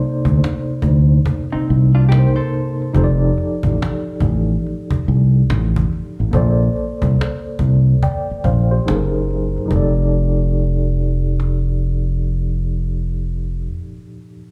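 A worn, slightly out-of-tune tine electric piano opens this sensual, relaxed neo-soul R&B groove at 71 BPM with a 16th-note swing, its tremolo, low-pass filter and slapback echo coloring chords that move from Cm7 through F13, Bbmaj9 and Gb69. A round, punchy fingered electric bass sits up front beneath a woody, close cajon with faint snares, while a dark, compressed hollow-body jazz guitar adds a brief clean second line at 1.5 seconds. It sounds like a live gig heard through the venue's PA with club reverb, and the bass and cajon fall away before the piano finishes at 14.5 seconds.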